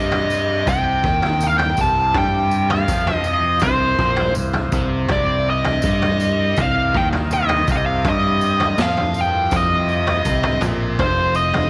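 Psychedelic rock in C minor at 81 BPM, this short excerpt cut from a longer piece has a dark, hypnotic mood in a steady, straight 4/4. Up front, a dark, smooth lead guitar carries the melody, its overdriven, picked tone colored by wah and tape echo. Beneath it, a bright, double-tracked fuzz guitar plays a riff in the background through distortion and phaser, while a round, direct fingered electric bass anchors the low end. A mellow, buzzing tanpura drone shimmers softly behind the band, giving the track its trance-like pull. The raw garage drum kit enters at 0.1 seconds with a boomy kick, medium-tuned snare and toms, its sound saturated and gritty with a rolled-off top, and a jingly tambourine joins at 0.3 seconds. The harmony rests on C minor before shifting to an F power chord at 11.0 seconds, all set in light reverb and small room ambience.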